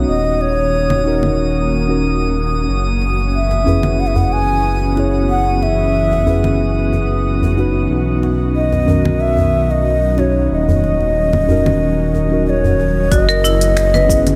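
A breathy, end-blown ney carries the melody from the opening moments, its reed-cane tone straight and tongued, trailed by delay. This short cut from a longer organic downtempo piece feels peaceful and earthy, moving through D#m7, F#7sus4 and Bmaj7 in an unhurried, straight four. Muted, felt-like synth keys with a dark, detuned edge and tape echo sit beside an ethereal, warbling vintage pad and an up-front sawtooth-and-triangle synth bass, all three pumping with sidechain. Above them, a faint glassy texture of drifting overtones hovers until 13.1 seconds. An afro-pop kit of congas, finger snaps, smooth hi-hat and shaker enters at 0.9 seconds, and a tight, cracking djembe with metal rattles sits in the background for much of the passage. At 13.1 seconds a new section brings brilliant, woody marimba arpeggios struck with hard mallets, along with a deep, tape-tinged electronic kick.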